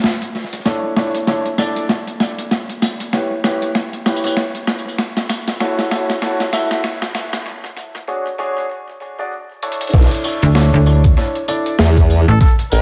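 A swung sixteenth-note groove in 4/4 drives this gritty, funky glitch hop, opening on a pitched-down, overdriven boom bap kit with a high-tuned snare, crash, hi-hat and tambourine, while a worn baby grand piano plays stabs through a filter sweep and sidechain pumping across the build-up and a break at 7.5 seconds. At the drop at 9.9 seconds a thumpy electronic kick and a saturated formant-sweep wobble bass with chorus arrive up front, joined by a snappy, metallic FM slap bass, and a clear, classical-style trumpet slips in a brief solo line at 12.3 seconds. Wet spring reverb, vinyl crackle and an echo-heavy mix give the whole cut a gritty, worn character.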